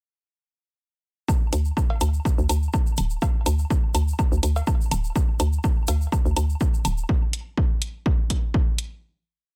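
This short minimal techno piece opens at 1.3 s with an up-front, punchy electronic kick in four-on-the-floor. It is joined at once by a close, dry egg shaker playing grainy, bright sixteenths, and by an analog woodblock and cowbell scattering clicks and blips in cross rhythm through a delay. A moment later a hollow, knocking FM bass enters on the off-beats, bouncy and mellow with a fast attack and decaying notes, shaped by sidechain pumping. Alongside it, a programmed closed hi-hat supplies hats and a backbeat. The mood is cool and quirky at 124 BPM in 4/4, with a light swing on the sixteenths. The analog kick, hi-hat and woodblock-cowbell parts carry a tape-warm color, and the kick and hat sound re-recorded in a large room, yet the overall mix has little reverb, and the single groove runs until the hi-hat stops at 8.9 s.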